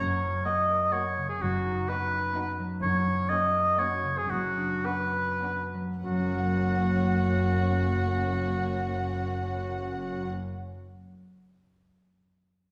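Cheerful and spirited, this short classical passage in F# major moves in a rubato 3/4 between 96 and 132 BPM, slowing from 2.1 to 6.0 seconds over a gentle progression that leans on the F# chord. An up-front solo oboe with a warm, softly attacked tone and light vibrato carries a second line over ringing fingerpicked concert harp arpeggios, while a clear, distant double bass section and a rich, very quiet cello section hold the bass. Bowed string sections enter at 0.5 seconds: a lush symphonic violin section carries the melody, an intense chamber violin section adds a background second line and a focused viola section fills in accompaniment, all heard from further back in a reverberant scoring stage, with the harp ringing on alone until 11.2 seconds.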